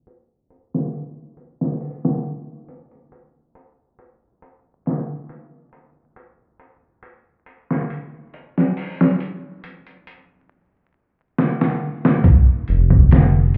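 Gritty, pitched-down sampler drums with a thumpy kick and medium-tuned snare open this dark, hypnotic trip hop cut at 69 BPM, sounding muffled as if heard through a wall amid club reverb and vinyl crackle, with a filter sweep running through the opening section while a drum fill at 11.4 seconds leads into a new section where a round, deep analog bass with tube saturation sits up front briefly from 12.7 seconds.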